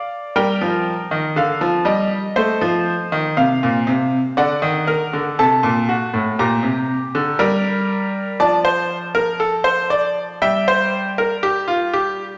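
A bright concert grand piano carries this baroque-style three-part fugue alone, its brilliant upper notes reaching Bb5 while a deep bass anchors the lowest voice down to A2. The mood is serious and driving, set in G minor at a steady 60 BPM in 4/4 with a straight feel. The harmony moves from G minor through a rootless A diminished, D major, G minor over Bb, D minor over F, and finally E diminished over G, each change arriving every two seconds from 0.4 seconds onward. The piano sits up front with a natural tone, surrounded by the wet reverb of a recital hall that lingers for about 1.6 seconds. This 12.4-second passage is cut from a longer piece.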